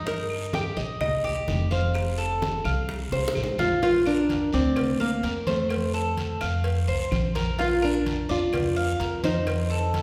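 Latin music in the Cuban son and guajira style, this relaxed, sunny passage moves at 128 BPM in a straight 4/4 and sits in Bb major, cut from a longer piece. A mellow, metallic Cuban tres with doubled strings plays picked arpeggios up front from the very start, alongside a thumpy, woody pizzicato upright bass on steel strings. From 0.1 s a dark, fingerpicked nylon-string classical guitar carries the melody, its finger squeaks audible, and it is the loudest part. Most of the percussion stays in the background: ringing, low-tuned congas; round, low-tuned bongos and cowbell struck with hard hands; and compressed, saturated claves entering at 0.3 s. A raspy guiro sounds close and dry. A drum fill from 3.1 to 3.8 s leads into a new section, where the chords move from Eb and F toward Bb and end on F7. The whole group sits in the resonant wash of a church or concert hall, with a reverb tail of 1.3 s.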